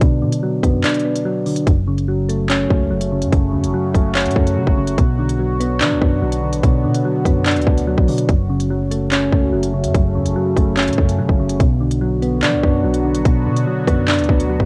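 Soft, round electric-piano-like synth keys carry the accompaniment in this menacing, tense drill hip hop excerpt at 145 BPM in a half-time feel, warbling with chorus, a cassette-tape haze and a filter sweep over the first 1.7 seconds, with a break arriving at 0.8 seconds. A drill kit with a hard-clipped kick, crisp hats, handclaps and rim clicks sits up front beside a deep, mellow 808-style bass with long sine-toned notes, as the chords alternate between Bm and F#m. At 2.7 seconds a detuned, wave-folded resonant pad enters quietly, evolving with a filter swell under chorus and phaser, all within a digital ambience and a lo-fi home-cassette sound.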